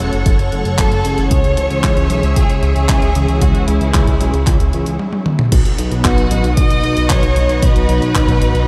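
Soaked in a long, dreamy reverb, this danceable, bittersweet italo disco excerpt at 114 BPM in straight 4/4, tuned to A4 = 436 Hz, sets a smooth, close studio violin section melody with delay over lush sub-octave string machine chords with ensemble chorus, round, brassy synth brass stabs with chorus and delay, a glossy, dark chorused synth bass, a punchy analog electronic kick, and a clean, sampler-style 12-bit drum machine with crash, handclaps, hi-hat and toms, while a drum fill from 5.0 to 5.5 s leads into the harmony's move from F#m and C#m to B.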